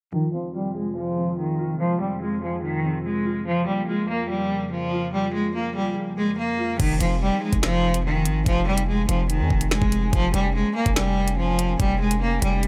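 Tense and dark, this half-time drill excerpt at 144 BPM in F minor opens with a bright, biting bowed cello carrying the melody with vibrato, a mellow, clean electric guitar accompanying until 6.8 seconds, and a hollow, flute-like pad sustaining Fm7 and Bbm7/F chords in the background, all under a filter sweep. At 6.8 seconds a distorted, saturated 808-style bass and an overdriven electronic drum kit arrive up front, with knocking kick, woody snare, bright hi-hats, finger snaps and crash cymbal. The sound is dry and close, with delay on the cello and chorus on the guitar and pad.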